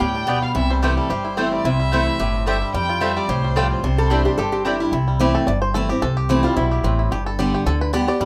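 A twangy, percussive five-string banjo, played with fingerpicks, drives this lively, joyful bluegrass excerpt at 220 BPM in C major, with a light swing on the eighth notes. A single bowed fiddle, rich and focused with light vibrato, sits distant in the mix and carries melody alongside the banjo until it drops out at 4.6 seconds. Underneath, a picked archtop guitar with old strings gives a bright, woody accompaniment up front, while a pizzicato upright bass on gut strings thumps out a dark bottom. A double-strung mandolin adds picked stabs through the opening half, and a metallic, nasal lap resonator guitar played with slide and fingerpicks slips in a second line from 4.0 seconds. From 4.9 seconds the banjo takes a solo over changes that move through C6 and back to G, all captured with close, detailed microphones and light reverb.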